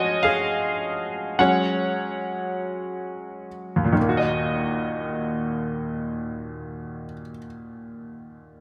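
Set in a lilting 6/8 with a straight feel, the music moves at a slow, unhurried pulse that slows down over the first 4.0 seconds. This aching, dramatic pop fragment is carried by an upright piano playing the accompaniment from the start through 8.6 seconds across a range from Eb2 to Gb5, heard on its own for the first 4.0 seconds. The instrument sounds woody and worn, slightly detuned, with a brilliant, present edge that sits up front in the mix. Its harmony drifts from Db to Gbsus2 before settling onto Ebm at 4.0 seconds, where a second section begins. A wet plate reverb with a 2.3-second tail surrounds the piano, and the bright 1980s-style digital production lends the whole recording a polished, dramatic sheen.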